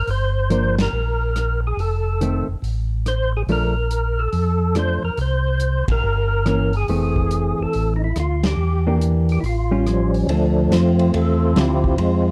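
A swung 4/4 groove drives this greasy soul jazz organ trio snippet, where a fat, lightly overdriven tonewheel organ with key click and slow rotary speaker carries the melody up front over a round, mellow tonewheel organ bass line, a dark, clean, compressed hollow-body jazz guitar adds accompaniment, and a smooth small-room soul drum kit of hi-hat, kick, ride, rim click and snare with a rolled-off top keeps time, the band hitting accents at 0.7, 5.8 and 8.4 seconds.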